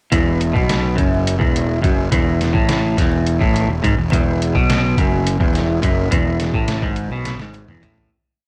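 The recording is dry and close, with little reverb around the main parts. This short psychedelic rock piece in 7/8 has a hazy, kaleidoscopic mood and is built on a single riff that runs from start to finish. An up-front, twangy electric guitar plays a clean, fingered single-note riff low in its range, colored by flanger. Beneath it, a picked electric bass with overdriven fuzz doubles the guitar riff in a syncopated line. A trip hop sampler-style drum kit, pitched down, gritty and compressed, carries the straight groove with a thumpy kick, a medium-tuned snare, hi-hat and toms, while very quiet, low-tuned congas ring in an evenly spread pattern from a distant large room. The piece fades out from 6.1 seconds, and a drum fill arrives at 7.2 seconds to close it.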